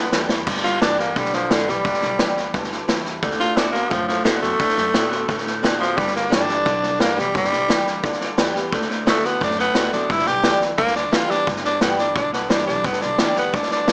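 Rollicking and retro, this short cut from a longer rockabilly piece opens with a quick drum fill on a vintage kit, its punchy kick and dark cymbals sitting up front, before a raspy, gritty tenor saxophone takes a vibrato-laced solo from 0.5 seconds to the end over a simple two-chord progression. Behind it, a boxy swing-style acoustic guitar with audible finger squeak, a twangy, slightly broken-up electric guitar riff with a warbly pitch drift, and a woody, thumpy upright bass fill out the background. Light reverb and a small-speaker sound give the recording an old-time character.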